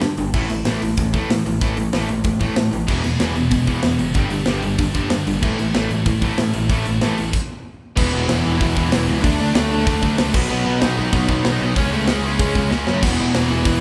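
A tight, polished metal drum kit with bright cymbals sits up front in this upbeat, energetic punk rock excerpt at 189 BPM in E major, driving a distorted electric guitar riff, a very quiet biting overdriven guitar and a growling picked bass, with a scooped, double-tracked high-gain guitar joining at 2.9 s and, after a stop at 7.3 s, a bluesy lead guitar melody entering at 8.0 s, all captured as a band playing live in one large room with moderate reverb.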